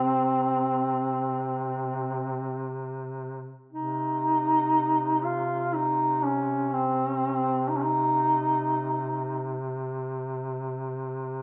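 A live room sound with a moderate large-studio reverb and a soft, rolled-off top end frames this mournful, longing Caucasian folk lament in free time and C phrygian, taken from a longer piece. One duduk carries the melody between C4 and F4 with vibrato and scooped notes, sounding roomy and distant yet up front, until it stops at 9.6 seconds. Beneath it, a second duduk with a warm, vintage tone holds a low C3 drone, also with vibrato and scooped notes, which carries on by itself once the melody stops, until 11.4 seconds.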